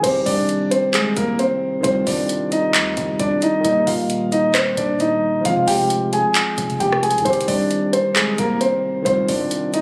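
A dark, mellow grand piano carries the brooding, eerie melody up front from the first moment, its audible action noise lending a vintage intimacy, while a gritty, barky electric piano played through a combo amp fills in the accompaniment, both softened by a low-pass filter. Underneath, a punchy 808-style bass with a noise layer, a fast attack and a decaying tail sits in the background, and an up-front electronic trap kit adds metallic hi-hats, handclaps, rim clicks and crash cymbal in a half-time feel as the chords move from Cm to Eb, Fm and back to Cm. Captured on a phone in a room with club reverb and compression, this short cut from a longer trap piece carries light reverb and digital ambience.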